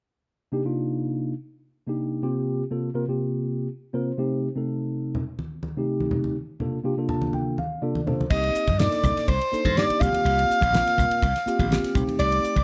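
A lightly reverberant small-room sound frames this slick, funky electric jazz fusion excerpt in C dorian at 124 BPM, opening with a mellow, clean tine electric piano up front, bathed in lush chorus, laying down Cm9 and suspended chords with short fills. Low-tuned congas with a thick-skinned, soft-handed tone join at 5.1 seconds. At 8.3 seconds the groove fills out as a clear, up-front soprano saxophone with light vibrato carries the melody alongside an airy, straight-toned concert flute line, while a bright, punchy slap bass and a dry, damped 70s drum kit with a fat snare and tight kick drive the section through Bbsus2 to a rootless F7/C.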